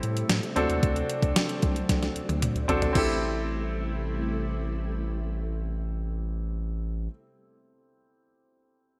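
Nostalgic yet urgent, this short cut from a longer 1980s-style pop piece moves in a straight four-beat pulse over an Am7 to D7 change before settling back on Am7. A brilliant, polished concert grand piano plays accompaniment up front throughout, its short sustain set against a silky string machine whose slow-attack chords carry an ensemble chorus and a mellow, vintage sheen. Underneath, a round analog bass sits deep and dark with a fast attack. A clean 12-bit drum machine with a thumpy kick, fat snare and gated reverb drives the opening, rolling through a drum fill from 1.9 seconds and dropping out at 3.1 seconds. The strings and bass stop at 7.1 seconds, leaving the piano alone to the close, all wrapped in a lush hall reverb and a bright digital production.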